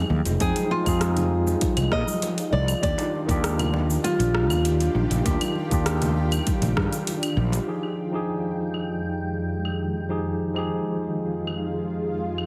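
Relaxed and smooth, this sunset chillout excerpt at 99 BPM in F dorian pairs a fingerpicked flamenco guitar melody, fresh-stringed with audible finger squeak and touched by digital delay, with a clean tine electric piano and a dark, shimmering, ethereal pad gliding between Fm9 and Ebmaj9, while an up-front fretless bass with tube saturation, distant soft-handed congas, an overdriven deep house kit with metallic hats, cabasa, claves and rim click, and a deep electronic kick sit under a heavily compressed, radio-like sheen; the kick drops out at 6.9 s, the guitar at 7.0 s and the bass and congas at 7.6 s, leaving piano, pad and the deep house kit to carry on from 7.7 s.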